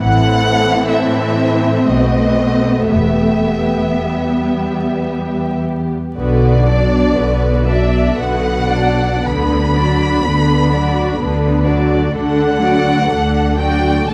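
Classical music for string orchestra, this is a slow romantic movement in 3/4, moving with a rubato feel at roughly 53-69 BPM and carrying a solemn, yearning mood. It is cut from a longer piece, opening in E minor and turning toward B minor at 6.2 s. The violins carry the melody high in their range with vibrato, a soft attack and an expressive, lush tone, while a second violin line sits beneath them with a more focused sound. Violas give close, focused accompaniment, and the cellos and double basses hold the bass together, the cellos smooth and even, the basses rich and slightly distant. The strings sit in a scoring-stage reverb of moderate size, and a layer of vinyl crackle runs through the whole passage until it breaks off at 14.1 s.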